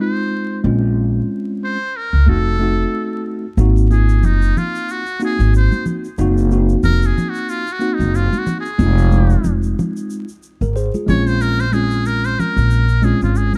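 A buzzy, metal-muted trumpet with light vibrato and slapback echo carries the melody and takes a solo from 3.6 seconds in this cool, nocturnal jazz-hop excerpt at 92 BPM in Bb minor with swung 16ths, set over a worn, slightly out-of-tune tine electric piano, a woody, thumpy pizzicato upright bass up front, and soft-handed tube shaker and congas that join at 3.6 seconds, inside a dark small-room production with vinyl crackle.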